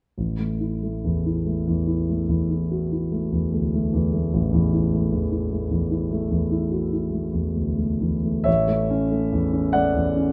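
A warm concert grand piano with deep bass and an up-front, open tone plays solo from 0.2 to 10.3 seconds in this hazy, serene impressionist classical fragment cut from a longer piece, drifting in rubato 5/4 at 63-76 BPM in A major over an A5 harmony before a new passage settles on A major at 8.5 seconds, all caught by close, detailed microphones within a moderate recital hall reverb.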